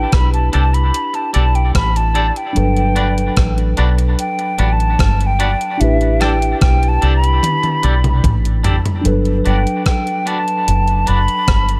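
A hollow, pure-toned concert flute opens this smooth, sweet lovers rock reggae excerpt, its close-miked, tongued solo carrying a gentle vibrato and a trail of tape echo over a mellow tine electric piano that is also touched by tape echo. Underneath, a deep, dark fingered dub bass sits up front with a round, punchy, foam-muted tone. A crisp 8-bit drum machine arrives almost at once, its thumpy kick, hi-hat, rim click and toms sounding sampler-like and tape-softened under gated reverb. From 0.5 seconds, a clean, scooped, twangy electric guitar adds picked stabs coloured by tremolo and tape echo. The harmony sways between A7sus4 and Gmaj7, and a drum fill from 7.4 seconds leads the flute solo out into a new section at 9.0 seconds, all set in a digital ambience.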